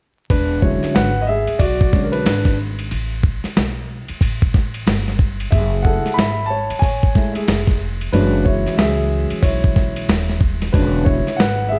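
A dark, mellow baby grand piano sits up front, soloing through this relaxed, smooth jazz-hop excerpt at 92 BPM with a swung 16th-note feel, with a break from 2.9 to 5.5 seconds. Beneath it sit a woody pizzicato upright bass and a gritty, compressed sampler-style drum kit with a thumpy kick, hi-hat, snare and ride, while the harmony moves from E13 through Asus2, F#m9 and a rootless Dmaj9#11/F# before returning to E13. Light studio reverb and vinyl crackle give the hip hop production a warm glow.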